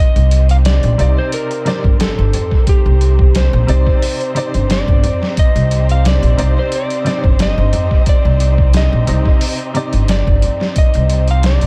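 An echo-heavy small-room mix frames this melancholic, cinematic trip hop excerpt in C minor at 89 BPM, where a gritty, pitched-down sampler drum kit with a thumpy kick and a woody pizzicato upright bass sit up front beneath a dark, slightly broken-up electric slide guitar melody carrying vintage 12-bit grit and dub echo, while veiled con sordino violins sustain lush chords over a Cmadd9 harmony and a clear upright piano with tremolo and tape echo adds accompaniment from 1.0 to 9.9 s.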